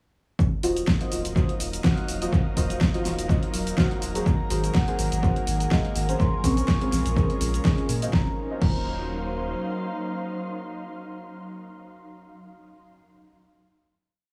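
A punchy, tape-warm electronic kick drives this hypnotic deep house piece at 124 BPM in Eb dorian, backed by an overdriven kit of fat snare, hi-hats, shaker and crash swung on the 16ths, while a round sine sub bass, dark dotted-rhythm chord stabs colored by chorus, phaser and tape echo, a detuned vintage sawtooth pad and an ethereal, airy pad all pump to the sidechain, with a mellow soft-mallet vibraphone entering at 4.3 s with echoing hook phrases before the drums stop at 8.8 s and a final Ebm69 chord rings out in the small, echo-heavy room.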